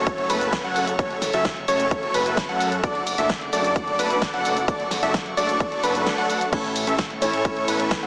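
This triumphant, anthemic festival progressive house excerpt opens at once with huge, detuned supersaw chords playing a bright riff, a thick unison sawtooth lead spinning arpeggios with tape echo and vibrato, a fat, saturated analog bass, and a close, earthy chamber string section holding sustained chords in the background. All four of these parts pump with sidechain compression against a punchy, layered electronic kick drum that sits up front from 0.1 seconds, joined by a big-room dance kit with a huge snare, hi-hat, shaker, ride and crash cymbals. The groove moves in a straight 4/4 at 130 BPM, tuned to A4 = 436 Hz, over a progression from F#m to D/F# and on to A. At 6.5 seconds a soft, felt-muted upright piano enters with intimate accompaniment, also pumping and carrying tape echo. The mix sits in a moderate digital room reverb and has a heavily compressed radio character, like sound from a small speaker.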